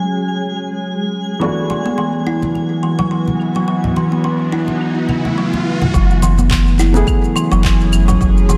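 Hypnotic and mystical, this organic downtempo excerpt moves in a lightly swung 4/4, cut from a longer piece. A soft, felt-muted upright piano with audible action noise and short sustain plays accompaniment through sidechain pumping and digital delay, alongside produced electronic shaker, claves and handclaps under low-pass filtering and studio reverb. Beneath it a tense, string-like drone of detuned sawtooth voices holds sustained chords with vibrato, a phaser and a filter sweep, while a twinkling granular texture adds sparkling, octave-up shimmer. At 1.4 seconds a woody, ringing kalimba comes up front with delayed arpeggios, soon joined by bright congas played with hard hands. A riser builds into the second section at 5.9 seconds, where a deep, round sine sub bass and a reverberant electronic kick drum arrive to anchor the groove as the harmony returns to F#m11.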